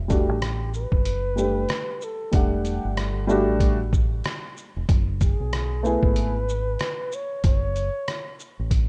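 A dry, rough home-demo sound frames this short, mellow and smoky jazz-hop cut from a longer hip hop piece, moving at 94 BPM in 4/4 with a lazy 16th-note swing in E dorian. The trip hop drum kit sits up front with a compressed, pitched-down, muffled sampler character. Its thumpy kick, hi-hat, rim click and shaker carry the ambience of being re-recorded in a large room. Beneath it, a deep dub fingered electric bass stays low and round, direct and amped, while a worn upright piano adds woody, slightly detuned chords with audible action noise and long sustain before dropping out at 6.3 seconds. Over the top, a breathy flugelhorn plays a whispered, intimate jazz solo with soft attacks, scooped notes, vibrato and a smooth top end. The harmony rests on Em11 before shifting to F#m11 at 4.9 seconds, keeping the shadowy mood of the short passage.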